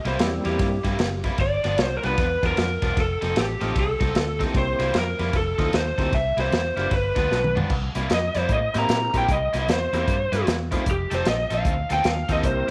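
A tape-saturated mix sits in a small room with moderate echo-chamber reverb, framing a soulful, rollicking electric blues shuffle cut from a longer piece. A dark slide guitar offers a brief second line at the very start, and then an up-front lead guitar through a small cranked amp takes the melody at 1.4 s, over a bright overdriven guitar riff, a round, foam-muted fingered bass and a percussive tonewheel organ with a slow rotary speaker and chorus vibrato. The crunchy breakbeat kit, gritty with a punchy kick and dark cymbals, plays a fill leading into the lead guitar's solo at 7.7 s.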